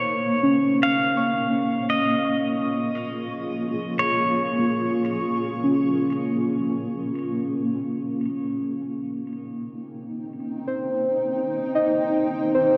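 Bathed in a wet cathedral reverb with a five-second tail, this short slice of a longer ambient piece floats at 57 BPM in 4/4, with a warm, weightless mood rooted in Db lydian. A granular cloud pad sits up front, cloudy, blurred and gently detuned, its slow attack and long release holding sustained chords while a filter sweep moves through it the whole way. Muted, felt-like synth keys play soft, intimate arpeggios with a dark, decaying tone, thickened by chorus and tape echo and a sub-octave weight. A bright, clean electric pedal steel guitar carries the melody up front, its compressed slide lines and volume swells trailing tape echo before it stops at 6.1 seconds. The harmony rests on Db6 and shifts to Eb6 at 8.2 seconds as the pad and keys drift on to the close.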